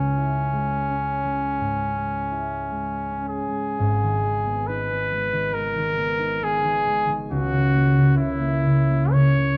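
Romantic classical duo in C# minor, yearning and melancholic, moving with rubato at 50-72 BPM in 4/4, where a vintage, up-front trumpet sings the melody over a concert harp whose thumb-plucked, ringing accompaniment sits close, the music turning to G# minor at 3.8 s and touching an A#dim/C# chord at 7.3 s, all within a dark, warm production and the lingering reverb of a recital hall in this fragment of a longer piece.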